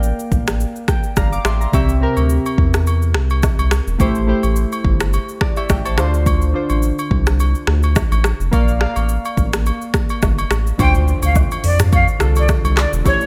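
A round, deep analog bass sits up front in this mellow, hypnotic afrobeats excerpt at 106 BPM in D minor, with a lightly swung 4/4 feel, beside a produced electronic drum kit of deep kick, metallic hats, finger snaps, handclaps, rim clicks, shaker and toms. Chorused analog keys with pulse and sawtooth tones and a filter sweep move through Bb, C, Am7 and Dm7, a brief synth keys fill arrives early, and close, dry agogo bells and woodblock enter at 1.7 seconds. At 10.8 seconds an airy, distant jazz flute with vibrato and chiff takes the melody as a very quiet electronic impact sounds, all in a lightly reverberant space.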